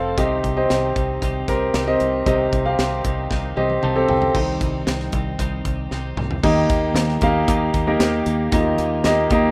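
An up-front concert grand piano with deep bass and long sustain carries this hopeful, warm piano-driven pop excerpt at 115 BPM in 4/4, moving from C minor to E-flat, and it plays a fill at 3.6 s before a short solo from 4.3 s. A bright, twangy twelve-string electric guitar plays a clean, picked riff, with a foam-muted fingered electric bass beneath, while a modern studio drum kit with a punchy kick and high-tuned snare comes in at 0.2 s and adds fills leading into each new section. The rough home demo mix sits in a light studio reverb.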